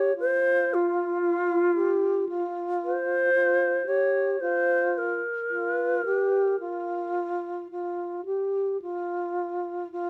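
Japanese traditional chamber music, austere and calm at a slow, rubato 55 BPM, sets an airy, end-blown bamboo shakuhachi carrying the melody with tongued, expressive vibrato until 7.2 seconds over a breathy, close-miked wooden-headed alto flute whose soft-attacked, unsteady second line lingers to 10.1 seconds, all in a dark production with light reverb, cut from a longer piece.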